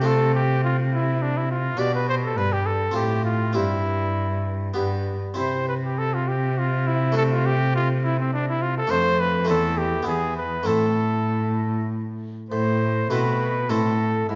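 In a flexible, rubato triple metre, this radiant, flowing baroque-style sonata movement with continuo, cut from a longer piece, sets a clear solo trumpet up front on the melody, its soft attack and smooth top lending a classical poise. A rich, bowed cello, also up front, carries the bass with expressive vibrato and portamento, while an airy, bright Italian-style harpsichord plucks the accompaniment. The harmony settles toward a minor-key cadence near 10.7 seconds before a new section begins at 12.5 seconds, all heard in a wet recital hall.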